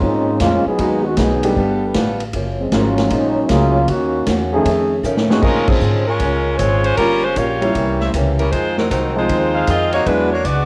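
A swung 4/4 at 155 BPM drives this sultry big band swing excerpt, with a punchy kick, medium-tuned snare, ride, hi-hat and crash in a big natural room, a thumpy gut-string upright bass, an intimate grand piano with audible action noise, and a boxy, old-stringed, ladder-braced acoustic guitar picked in the background. A close-miked, up-front trombone section carries the opening line until a drum fill at 5.0 seconds, then a soft-attack saxophone section takes the melody in Bb minor over chords such as Bbm11, C7b9 and Fm7, while a smooth-topped trumpet section adds background stabs at 5.4 seconds and again from 8.0 seconds. The horns and keys have plate reverb, and a cassette home recording gives the whole a homespun, lo-fi tint.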